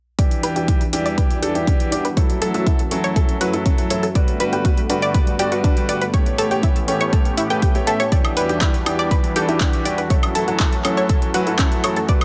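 Progressive house at 121 BPM in E dorian, dreamy and driving: a punchy, tape-warm electronic kick sits up front beneath a big-room dance kit of handclaps, overdriven metallic hi-hats and woodblock, while an evolving, detuned supersaw swell holds soft-attack chords through a filter sweep, a round, bright analog pluck runs chorused, delayed arpeggios, and a clear, intimate baby grand piano with audible action noise adds delayed, low-pass-filtered stabs, the synths and piano pumping with the sidechain over an Em7, F#m7, Gmaj7, A7 progression in light reverb.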